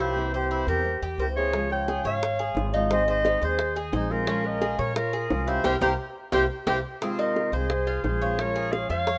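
A clear, distant clarinet carries the melody in this danceable, nostalgic Cuban son and guajira fragment in F minor at 175 BPM, with a breathy, vibrato-laced concert flute close behind on a second line. Fingerpicked nylon-string guitar with audible finger squeak, metallic picked tres arpeggios on double strings and a woody, dark pizzicato upright bass fill out the harmony. Tight, high-tuned bongos join at 1.5 seconds, a band accent arrives at 5.6 seconds with a drum fill following at 6.3 seconds, and a new section begins at 7.0 seconds, all set in a moderate plate reverb.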